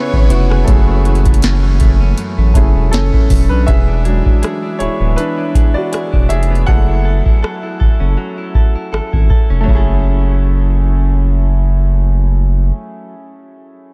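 A light reverb gives this late-night contemporary R&B excerpt a soft sense of space, with a booming analog drum machine and a thick, saturated sub bass sitting up front. At 80 BPM in 4/4 with a gentle swing on the sixteenths, the piece moves in F# minor through C#m7, F#m7 and E7, carrying a longing mood. A vibrato-laden alto saxophone in a jazz style opens briefly in the background with a delayed phrase that ends by 1.4 seconds, while a clean, direct-recorded electric guitar picks compressed arpeggios through a delay. The drum machine pairs a deep kick and crisp snare with metallic hats and rim clicks, playing until 9.9 seconds. From 3.7 to 9.7 seconds the grand piano takes a solo, its open, long-sustaining tone ringing clearly over the bass and guitar.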